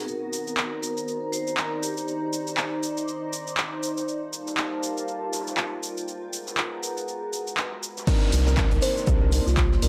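Set in a small, lightly reverberant room, this late-night deep house excerpt opens with a metallic, ringing vibraphone melody with delay over a detuned, moody analog pad, soft felt-muted upright piano stabs with tape echo and a cloudy, evolving granular pad, both pads carrying sidechain pumping, while an up-front analog drum machine with handclaps, crash, hi-hat and shaker sits above a very quiet loose indie kit, until the drop at 8.1 seconds brings a punchy, tape-warm electronic kick, an electronic downlifter, a round sine sub bass from 8.3 seconds and, from 8.8 seconds, a woody kalimba with digital delay in the background.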